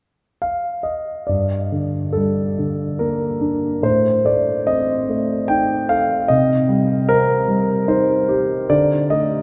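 A lyrical classical solo piano piece in G minor, this reflective, dark recording moves in 3/4 at around 73 BPM, with an uneven, rubato pulse that lets the phrases breathe freely. A single concert grand carries everything, entering at 0.4 seconds and sounding from G2 up to G5, its tone dark and mellow with a deep bass and an up-front presence. The harmony settles on G minor at 1.3 seconds, then passes through A diminished and C minor before arriving on an open D fifth near the close. The piano sits in a very wet cathedral-like reverb with a long decay, so each chord rings on at length as if heard in a church or concert hall. Cut from a longer work, this brief passage ends at 9.4 seconds, leaving the music suspended.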